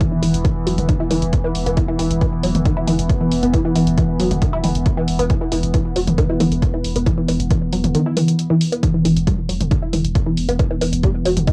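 A squelchy, resonant blip pluck riff, run through phaser, overdrive and analog delay, opens this intense, driving peak-time techno cut alongside a moody, wave-folded ambient pad drone and an up-front, layered electronic kick, with a tape-warm analog drum machine adding hi-hats and toms. A thick, tube-saturated sine sub bass enters at 0.2 seconds, and the pluck, pad, bass and drum-machine parts all pump against the sidechain. The kick drops out between 7.9 and 8.8 seconds before returning, all wrapped in a wet booth ambience with the character of a home cassette recording.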